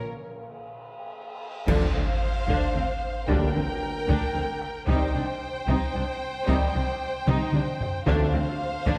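Dramatic and dark, this epic orchestral film-score excerpt in 3/4 at 113 BPM opens with a close, vibrato-rich violin melody over mellow distant horns and trombones, then at 1.7 seconds lush bowed violins, violas, cellos and woody double basses enter beneath hard-stick taiko drums, an up-front crash of dark cymbals and concert bass drum, and timpani strikes at 3.3 and 8.1 seconds, all moving through Dm7, Gm/D and Cm in a roomy concert-hall reverb.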